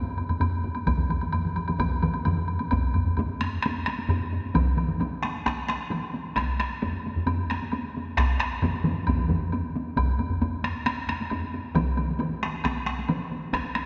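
Driving and ceremonial, this Japanese traditional taiko drum ensemble piece is cut from a longer work and set in a straight 4/4 that speeds up throughout. Four layers of taiko carry the percussion, with two played with hard sticks and sounding close and dry, and two struck with heavy sticks that sit up front in a small-room sound. A woody woodblock, also close, runs alongside the drums from 0.2 s to 13.9 s. The first taiko layers begin almost at once, and more join by 0.9 s, with one dropping out at 13.2 s. The overall recording carries a wet church reverb, lending the ensemble the resonant air of a large hall. A brief opening gives way at 2.7 s to a longer passage that runs to the end.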